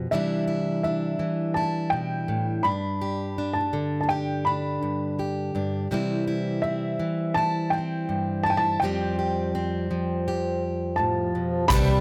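This short cut from a longer indie folk piece opens on a fingerpicked, plugged-in steel-string acoustic guitar, set up front with a concert-hall fullness. A dark upright piano carries the melody high in its range almost at once. The piano is mellow and woody, slightly detuned, with audible action noise that gives it a worn, intimate character. At an unhurried 83 BPM in a straight 4/4, the harmony moves through Cadd9, G, C and Fadd9 in C major, and the mood is uplifting and warm. A distant, roomy French horn enters at 11.0 seconds with a classical-style second line. Then at 11.7 seconds the arrangement begins to build as several parts arrive together: a shimmering, octave-doubled twelve-string acoustic guitar with a boxy bite, a very quiet, twangy banjo playing arpeggios, a round, amped fingered electric bass up front, a small-room brush drum kit with a punchy kick and hi-hat, and a grainy egg shaker in the background, all within a light reverb.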